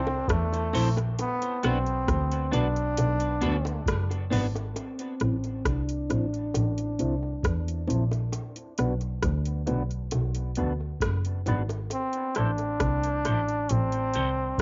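An overdriven vintage rhythm box with a deep kick, metallic hats and rim click sets a straight, hypnotic dub reggae pulse under an earthy, bowed double bass, while a clean semi-hollow electric guitar with analog chorus and dub echo accompanies, tight high-tuned bongos sit in the background, and a brilliant, punchy trombone carries the solo melody with vibrato and echo, all captured as a meditative home cassette recording with light reverb and a filter sweep from 4.8 seconds to the end.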